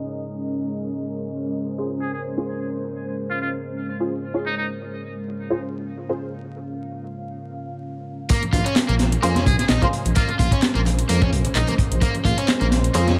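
Vinyl crackle, a small room ambience and a dusky, filtered tone frame this raw, gritty breakbeat excerpt in Bb minor at 129 BPM, with a light swing on the sixteenths. It opens on a deep, moody ambient pad holding a Bbm9 chord, its detuned saw voices carrying chorus, reverb, 12-bit sampler grit and sidechain pumping beneath a filter sweep, while muted, detuned dub chord stabs with phaser, ensemble chorus and dub echo arrive soon after. From 2.0 seconds a trumpet with a metal mute plays a jazz-style solo melody, buzzy and thin with light vibrato and scooped notes, sounding distant through an AM radio filter and dub echo. At the drop at 8.3 seconds a crunchy acoustic breakbeat kit lands up front with a punchy kick and high-tuned snare, layered with an electronic house kit's handclaps and metallic hats. Faint, bright congas and an overdriven semi-hollow guitar riff carrying spring reverb and echo join at the same moment. 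A rumbling, detuned saw bass enters just after, deep and saturated, anchoring the section until the cut.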